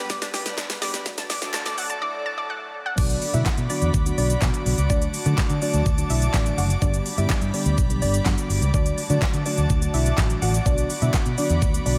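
Up-front electronic drums with a knocking kick and fat snare drive this confident, energetic dance-pop cut in B minor at 125 BPM, where a mellow tine electric piano, an airy, breathy pad and a bright, nasal analog pluck arpeggio pump under sidechain through a filter-swept build-up and drum fill, until the drop at 3.0 s brings in a dark, foam-muted fingered electric bass and a soft, round pluck melody with chorus and tape echo, while a distant, hollow group handclap sits very quietly in a large room and light reverb frames the mix.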